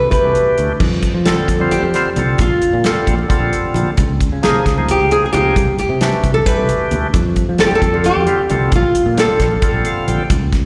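Heard through a venue's PA with a touch of recital-hall reverb, this cut from a longer electric jazz fusion piece moves at a funky, sunny 265 BPM in 7/8, in F major, with chords drifting through Cmaj9, Fadd9, Bbmaj9 and Dbmaj9. A small, fingerpicked nylon-string guitar carries the melody up front with slapback echo, over a growly, punchy sustaining fretless bass and a dry, damped 70s drum kit with tight kick, medium-tuned snare, hi-hat and crash. A reedy, clean tonewheel organ with key click, slow rotary speaker and slapback echo fills in the harmony and adds a fill at 9.6 seconds, while very quiet, thick-skinned congas played with hard hands join at 0.8 seconds.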